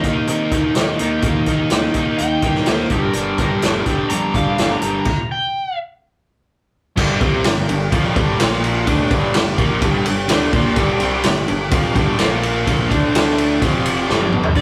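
A double-tracked, overdriven electric guitar riff drives this gritty, smoky blues rock and southern rock excerpt in G minor at 126 BPM, up front beside a vintage drum kit with a punchy kick and rolled-off top that closes on a fill at 14.1 s. A bright, overdriven slide guitar carries the melody until 5.8 s, and a stop at 5.1 s breaks the groove. A growling, overdriven fingered bass sits in the background while a very quiet tonewheel organ holds shouting chords through a slow rotary speaker, all in a rough rehearsal-room sound with a small room reverb.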